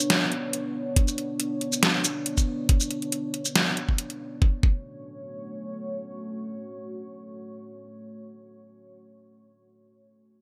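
Deep dubstep with a heavy, brooding half-time swing, where a dark, detuned sawtooth pad sustains chorus-washed chords up front throughout, a dubstep kit of deep snare, shaker and metallic hats in gated reverb stops at 4.2 seconds, and a knocking electronic kick enters at 1.0 seconds, all under a bright 1980s-style digital sheen with light ambience as the harmony moves from Bmadd9 to F#m.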